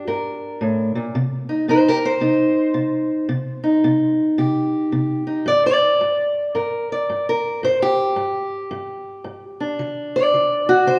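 A fingerpicked steel-string acoustic guitar opens on a G minor chord and carries this short acoustic country blues excerpt alone. It has a dark, boxy parlour tone and sits up front in the mix. The mood is soulful and brooding, at 111 BPM in 4/4 with a swung eighth-note feel. The harmony moves from G minor to C minor at 1.1 seconds and back to G minor at 5.5 seconds, then lands on D at 9.8 seconds. The guitar spans G2 to D5, and a moderate hall reverb gives it the spacious ring of a church or concert hall.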